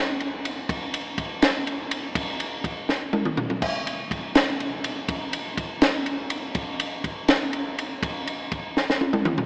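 Heard through a long cathedral reverb with a thin AM-radio tone, this short, playful and wistful rock fragment in 6/8 at 82 BPM (dotted quarters) features a compact acoustic cocktail drum kit, dry and up front, with a punchy kick, a high-tuned snare, toms, ride and crash cymbals, and fills at 2.9 s and 8.8 s before the cut.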